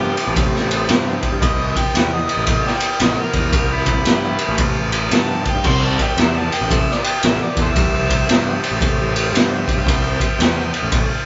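Raunchy and driving, this short cut from a longer blues rock and southern rock power-trio piece swings at 114 BPM in 4/4, sitting on a C major chord throughout. An overdriven, amplified harmonica takes the solo from the opening until 8.6 seconds, its gritty tone marked by vibrato, tongue slaps and scooped notes in a jazz style. Beneath it, a fuzz picked electric bass growls with a bright, direct and amped edge, while an overdriven tonewheel organ holds full, thick sustained chords in the background, its percussive third harmonic percussion and key click adding bite. A raw garage drum kit enters at 0.2 seconds, sitting up front with a boomy kick, a high-tuned snare, crash and ride cymbals, and a saturated, mid-forward sound with a rolled-off top. The band plays live in one room with light reverb, giving the whole take a dark, close and rough-edged character, and the organ rings on to 11.3 seconds.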